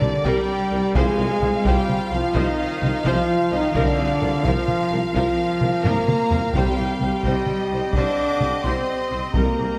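Heroic and dramatic, this epic orchestral film-score passage in C minor moves at 86 BPM in a broad 12/8, cut from a longer piece and lasting just under ten seconds. A distant, intense violin section carries the melody, with a hollow concert flute and a smooth background violin section sharing a second line, while lush violas fill out the accompaniment. French horns carry the sustained chords with a loose, classical tone, joined by vintage-sounding trombones and a very quiet pipe organ whose bright flute stops add chiff and sparkle. The low end rests on a focused, close cello section, a mellow, very quiet tuba and an expressive double bass section holding C. A close, dry taiko ensemble struck with heavy sticks drives throughout, with a drum fill from 5.8 to 6.5 seconds, and articulate hard-mallet timpani appear briefly near 1.0 seconds before returning at 6.5 seconds as the harmony settles onto C minor. 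Moderate concert hall reverb gives the whole ensemble a grand, spacious setting.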